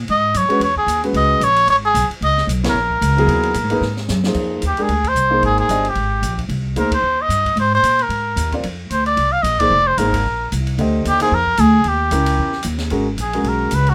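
A veiled, cup-muted trumpet with scooped notes leads this cool, searching modal jazz excerpt at a swinging 224 BPM in F dorian, over woody, thumpy pizzicato upright bass, an intimate grand piano with audible action noise and long sustain, and a natural studio drum kit with dark cymbals, a high-tuned snare and a boomy kick, all in light reverb, with band accents at 2.6 and 5.0 seconds and a brief muted trumpet solo from 12.9 seconds.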